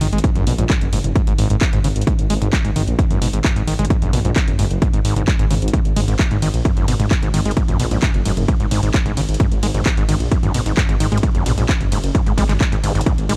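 Dark and industrial, this driving peak-time techno excerpt runs at 131 BPM in G# minor, with an overdriven, up-front electronic kick from 0.2 seconds under a punchy analog drum machine of handclaps, hi-hat, ride cymbal and toms pumping with sidechain, a thick, beating detuned saw bass warmed by tube saturation, and a squelchy, resonant acid bass riff soaked in distortion and tape echo, all captured as a dry, gritty hardware recording.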